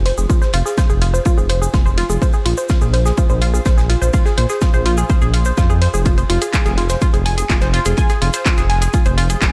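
A straight 4/4 pulse at 125 BPM drives this melancholic, dramatic melodic techno in F minor, built on an overdriven, up-front electronic kick with studio reverb, punchy analog drum-machine handclaps and hi-hats (the hats pumping under sidechain), a very quiet acoustic soul kit adding dark ride cymbal and snare, and a grainy, bright egg shaker, while a deep, rumbling detuned saw bass pumps beneath round analog pluck arpeggios carrying chorus, tape echo, sidechain pumping and a filter sweep over chords moving from Fm to Bb5 at 2.2 seconds and back to Fm at 6.1 seconds, all set in light small-room reverb.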